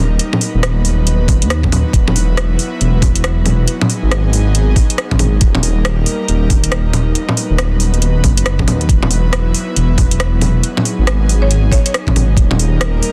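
Rainy and ghostly, this future garage excerpt moves at 138 BPM in G# minor with a 62% swing on the sixteenths, as a soft, breathy pad with chorus holds sustained chords over a cycle of B/D#, Esus2, G#m7 and D#, pumping against the sidechain alongside a deep, rumbling, detuned saw bass that sits saturated and up front. A tape-warm garage kit of bongos, metallic hi-hats and a rim click, with studio reverb and soft clipping on the snare, enters at 0.2 seconds, joined at 1.3 seconds by a layered, knocking electronic kick. Near the end, at 11.4 seconds, a buzzing, woody marimba touches a single C#5 through tape echo in the background, all within a dense, heavily limited modern master with little room sound.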